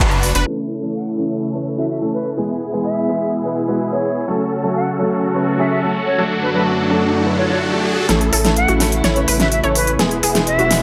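A huge, bright supersaw lead carries a phased, filter-swept riff over crisp hats and a huge snare from the up-front big-room drum kit in this triumphant, euphoric festival progressive house excerpt at 126 BPM in A major, cycling through A, E, F#m and D/F#, with a dark, bowed string section, a mellow, worn grand piano and an airy, reedy flute melody, while a very quiet riser enters at 6.1 s and the thick, saturated sub bass and a lush, punchy unison pluck return at 8.1 s for a drum-filled build-up.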